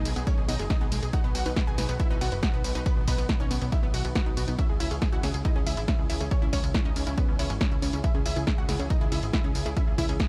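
With a dark, warm production and little reverb, this soaring, euphoric uplifting trance passage at 139 BPM in C# minor, cut from a longer piece, moves through G#m, B and C#m as a lush, detuned unison pluck carries the melody with tape echo and sidechain pumping, a second unison pluck plays arpeggios in the background through a moving notch filter, a funky sawtooth analog bass pumps beneath them, a very quiet silky string pad holds sustained chords with ensemble chorus and vibrato, and a punchy analog drum machine of hi-hat, ride cymbal, snare and tambourine is joined at 0.3 seconds by an up-front electronic kick.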